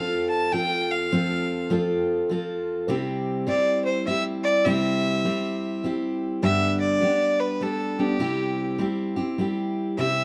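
Country piece in 3/4 at 102 BPM with a swung, easygoing and nostalgic feel, this short excerpt sets a clear, earthy fiddle with light vibrato carrying the melody up front over a full-bodied picked steel-string acoustic guitar, both playing throughout, through F and C before moving to G and back to C at 8.2 seconds, all in a dark production with moderate studio reverb.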